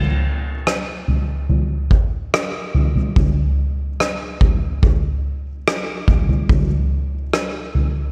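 Tender and hopeful, this short pop passage is cut from a longer piece and moves at an unhurried 72 BPM in a straight 4/4 feel. The only instrument is an acoustic drum kit played with soft mallets, entering at 0.7 seconds and stopping at 7.9 seconds. Its voice is built from kick drum, rim click and toms, with a punchy kick. The kit sits up front in the mix yet carries a distant, roomy studio character. A light reverb adds gentle space around the playing.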